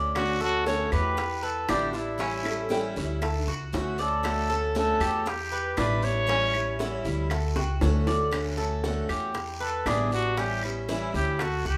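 Cuban son with a guajira flavour, this danceable, warm passage moves at 118 BPM in D major over a recurring Dmaj9–Em7–A7 progression. A woody, thumpy pizzicato upright bass sits up front beneath a metallic, double-strung Cuban tres playing arpeggios and a boxy parlour steel-string guitar offering picked accompaniment, while tight, high-tuned bongos, background claves and a raspy guiro keep the pulse. A mellow, breathy trumpet with vibrato carries the intimate melody; a bright, fingerpicked nylon-string guitar with audible finger squeak adds a second line from 2.5 to 8.3 s, and after a drum fill the trumpet takes a solo, all within a moderate large-studio reverb.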